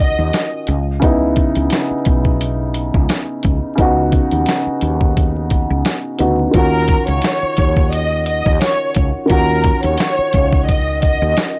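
Boom-bap hip-hop at 87 BPM in Eb minor, tough and reflective, cut from a longer piece: a dark, worn, slightly detuned upright piano with cassette-tape colour and a round, hollow-bodied fretless bass hold Ebm9 to Dbm9 chords from the start, a compressed, pitched-down sampler drum kit with a thumpy kick enters at 0.3 seconds, and a lush, bowed violin section with vibrato and analog delay returns at 6.5 seconds to carry the melody, all in a dry, gritty hardware sound with transformer saturation and vinyl crackle.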